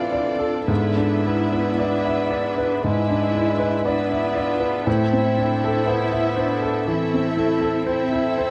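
A romantic classical movement for piano and orchestra in A minor, this brief excerpt from a longer piece moves at a slow 51-60 BPM in 4/4 with a free, rubato feel and a brooding, passionate mood. A clear, intimate baby grand piano carries the melody up front, its natural tone touched by audible action noise. A smooth, even violin section sings a second line, while a mellow solo bassoon with light vibrato and a soft attack sits distant and roomy in the accompaniment. Behind them, an expressive viola section and a dark, woody chamber cello section, both bowed with vibrato, fill out the harmony and bass from the background. The harmony rests on A minor, shifts to E7 over G# at 0.7 seconds, and returns to A minor at 4.9 seconds, all captured with close, detailed microphones and light reverb.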